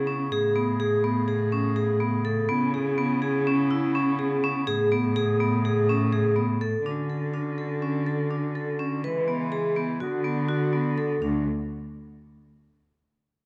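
Contemporary chamber music in an uneven 9/8 at 247 BPM in eighths, set in D lydian, this shimmering, playful excerpt pairs bright, metallic vibraphone arpeggios played with hard mallets and a slow motor vibrato, ringing up front, against a focused, bowed solo cello bass line with a smooth top and a soft bed of sustained woodwind section chords, all under light reverb in a dark, warm production, as the harmony moves from Amaj9 and C#m7 to Dmaj7, E6 and Bm/D before the parts stop near 11.5 seconds.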